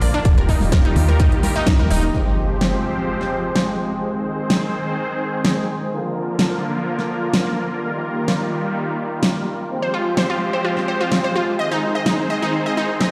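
Progressive house at 127 BPM in F dorian, this expansive, driving passage is cut from a longer piece and moves through Ebadd9, Fmadd9, Ab and Bb. An evolving, detuned supersaw swell holds soft-attack chords up front throughout, pumping against the sidechain, while a lush, bright unison pluck spins arpeggios with tape echo and a filter sweep, dropping out and then returning at 9.8 s. In the opening bars, a tight sawtooth sequencer bass drives underneath a punchy, layered electronic kick, with ringing, close and dry congas tucked in the background. The band hits an accent at 1.7 s, and at 2.1 s the bass, kick and congas give way to an electronic impact. Through it all, a produced pop kit keeps a fat snare and crisp, pumping hats at the front, and the mix sits in a moderate scoring-stage reverb with the stony ring of a big system playing in a bare room.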